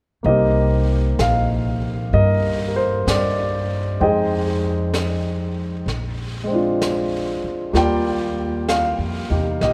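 A warm grand piano, up front with long sustain, carries the chords of this smoky, intimate jazz ballad in C minor, moving from Cm9 through Fm9 and Bb9 to Ebmaj9 at a slow 64 BPM with a gentle swing. A woody, pizzicato upright bass sits close beside it, while a brushed drum kit with a high-tuned snare and hi-hat sits quieter in the mix, joining at 0.3 seconds. The whole passage is cut from a longer piece and bathed in a lingering cathedral-like reverb, as if heard in a church or concert hall.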